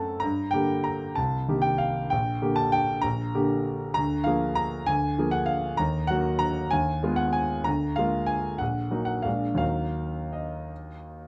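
Close, detailed microphones and a light reverb put a clear grand piano up front in this brief excerpt from a longer classical waltz. Playing alone from start to finish, the piano has a smooth, vintage tone that spans from Bb1 to Bb5. The mood is bittersweet and nostalgic, moving in 3/4 with a flexible, rubato feel at a tempo that drifts between 160 and 206 BPM. It opens in G minor, passing through Gm, Cm7 and Gm/Bb, before a Bb7/D at 4.0 s turns it toward Eb minor. From there the harmony circles through Ebm, Fm7b5/Eb and Bb7, coming to rest on Ebm at 9.6 s.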